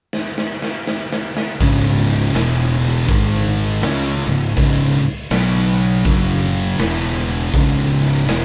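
A raw garage drum kit opens with a fill at 0.1 s, its boomy kick and medium-tuned snare sitting up front in a bright stone room with a gritty, saturated sound, before two thick fuzz guitars and a growly, punchy fingered electric bass crash in at 1.6 s with a sludgy, ominous stoner and doom metal riff at a swung 81 BPM in C# minor. The guitars, one dark and one warm, are held in the background while the band plays live together under a light reverb through power chords moving from C#5 to E5, G#5, B5 and F#5.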